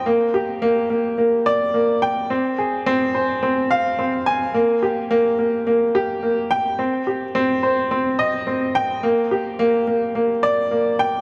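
Melancholic and hypnotic, this short electronica fragment, cut from a longer piece, moves at 107 BPM in a straight 4/4. A lone upright piano carries everything from start to finish across its 11.2 seconds, ranging from Bb3 up to Ab5. Its tone is woody and close, sitting up front in the mix. A large ambient reverb with a long tail of 4.5 seconds surrounds the sound in a spacious, lingering haze. The tuning sits slightly below standard pitch, at A4 = 439 Hz.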